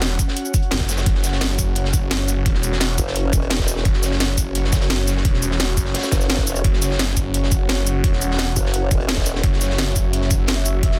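A snarling, overdriven saw bass pumps against an up-front drum and bass kit with a cracking snare, bright hats and shaker, a gritty breakbeat kit tucked in the background and an airy, breathy chorused pad, then a knocking overdriven kick joins at 0.2 seconds to drive this aggressive, futuristic dark technical drum and bass cut at 172 BPM, with a formant-sweep wobble bass entering at 3.0 seconds and a deep, moody pad with built-in reverb settling underneath from 7.6 seconds in a dense, heavily limited, dry mix.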